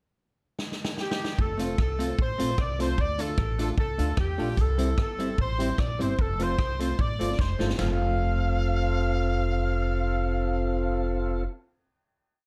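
Ska at 150 BPM in F major, upbeat and bouncy, this short whole piece opens with a drum fill from 0.6 seconds on a swinging big-band kit recorded in a big room, its punchy kick and medium-tuned snare up front as it settles into a ska beat with a side-stick backbeat. The upright bass joins at 1.4 seconds with a woody, pizzicato walking line on steel strings, moving through F, Dm, C and back to F. A dark, clean hollow-body jazz guitar plays off-beat chops alongside a lightly overdriven tonewheel organ, whose off-beat stabs carry key click, vibrato, a slow rotary speaker and slapback echo. Above the band, a clear, punchy horn section, in from 1.0 seconds, states hook phrases with vibrato and its own slapback echo. The drums stop at 7.9 seconds after a second fill, leaving the band to ring out on a final chord until about 11.5 seconds, all within a light reverb.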